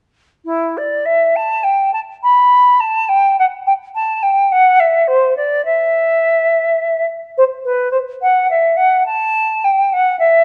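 A classical, baroque-style fantasia for unaccompanied flute, this short passage cut from a longer piece carries a grave, solemn mood in a rubato 12/8 feel. A silver concert flute plays alone from 0.5 to 10.4 seconds, moving between E4 and B5. Its metallic, pure tone has a crisp attack and expressive vibrato, sitting up front yet with a slightly distant quality. Light reverb gives the solo line a gentle sense of space. The result is an intimate, unhurried meditation that rests on the clarity of a single voice.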